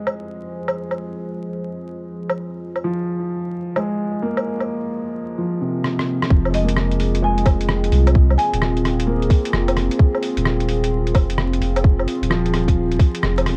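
A tight, layered electronic kick lands up front at 6.3 seconds alongside a deep, round sine sub bass, anchoring this melancholic, wistful future garage passage at 130 BPM in F minor with a swung 16th-note feel. Before that, a muffled, pitched-down lo-fi drum kit of hi-hat, rim click and woodblock plays with gritty 12-bit character, while a soft felt-muted upright piano with analog delay and a moody, detuned analog pad with chorus and phaser both pump against the sidechain over an F minor chord. The pad carries a filter sweep through the opening, a drum fill leads into the kick's entrance, a woody hard-mallet marimba with delay briefly sounds a background melody from 6.5 seconds, and dark digital ambience and vinyl crackle wrap this excerpt from a longer piece.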